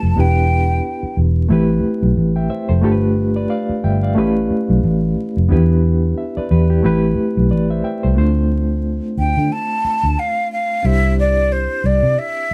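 Introspective and sultry, this neo-soul R&B groove moves at 90 BPM in 4/4 with a lazy swing on the sixteenths, cut from a longer piece and set in D dorian. A barky, reedy electric piano carries the accompaniment throughout, its lightly overdriven tone pulsing with medium tremolo as it moves through chords like Em7, Am9, G9 and A9. Beneath it, a vintage fingered electric bass sits up front with a dark, round, foam-muted sound, holding down the low end from E1 to D3. A breathy, hollow jazz flute with vibrato and a soft attack sounds briefly at the opening, then returns at 9.2 seconds for a solo over Dm7 and C, its lifted highs floating between C5 and A5. The band plays live in one room with light reverb and a layer of vinyl crackle, giving the recording an intimate, worn character.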